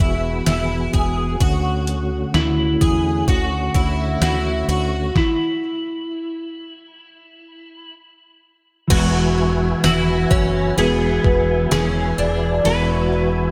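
Bright, 1980s-style digital production bathed in lush hall reverb frames this ethereal, floating dream pop cut at a slow 64 BPM in E mixolydian, where a mellow, flute-like tonewheel organ holds sustained chords through fast rotary speaker and chorus vibrato, a shimmering, octave-doubled twelve-string acoustic guitar picks arpeggios through chorus and delay, a round, punchy fretless bass anchors the low end, and a detuned, overdriven 8-bit drum machine with a thumpy kick and gated reverb drives the groove, while a slightly broken-up slide guitar carries the up-front melody from 2.4 seconds, the band halts for a stop at 5.2 seconds, and a dark, clean semi-hollow electric guitar adds harmonic-tremolo accompaniment when the music resumes at 8.9 seconds.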